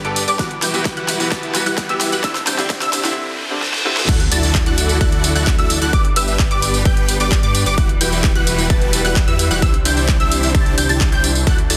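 Dense, heavily limited and lightly reverberant, this euphoric, triumphant festival progressive house excerpt layers a bright baby grand piano, distant bowed strings, a lush unison pluck arpeggio, a huge detuned supersaw riff through tape echo and a thick chorused saw bass, each pumping to the sidechain, over a punchy, overdriven kick and a big-room kit with a huge snare, claps and tambourine, while a very quiet riser and reverse cymbal build to the drop at 4.1 seconds, where the piano stops and an impact lands.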